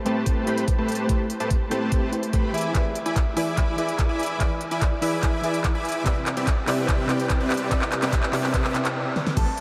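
Soaked in a huge, long-tailed reverb, this dreamy, emotional future bass excerpt moves in a half-time feel as one long build-up, with a drum fill running from 2.7 to 9.0 seconds. A thick, detuned supersaw riff with a low-pass filter and sidechain pumping sits up front over a soft, round pluck accompaniment with chorus and ambient delay. A knocking electronic kick and a layered pop kit with a fat snare, crisp hats, handclaps and crash play under chords moving from Am9 through E7 to Cmaj9, and only at 9.4 seconds do an airy lead arpeggio with cassette-tape colour and a deep, boomy 808-style bass briefly appear.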